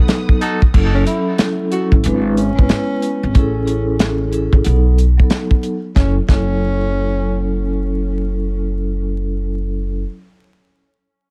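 Moody and reflective, this swung boom-bap hip-hop excerpt in F# minor at 92 BPM opens with a brief lush sustained chord of dark bowed studio strings and a quick jazz-style trumpet-section stab, then settles over mellow soft-mallet vibraphone accompaniment, a tight, dry soul drum kit with dark cymbals, and woody, thumpy pizzicato upright bass entering at 0.7 seconds, while a breathy, whispered tenor saxophone carries an intimate subtone melody with scooped notes and tape echo from 0.9 seconds, all under a small-room hiss of vinyl crackle.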